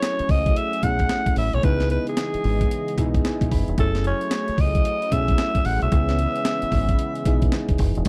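A swung 112 BPM new jack swing groove in 4/4 drives this punchy, confident R&B excerpt, built on a compressed, gritty breakbeat sampler-style kit up front with a thumpy kick, high-tuned snare, hi-hat, tambourine and crash, joined at 0.2 seconds by a deep, round dub fingered electric bass. A raspy, growling alto saxophone leads up front with scooped notes, vibrato and slapback echo over F#m7 and C#m7 chords. Soft electric-piano-like synth keys with chorus add a mellow fill at 2.7 seconds, while a brassy, detuned analog pad with a filter swell sustains chords in the background, all in a dry, close 1970s-style studio sound.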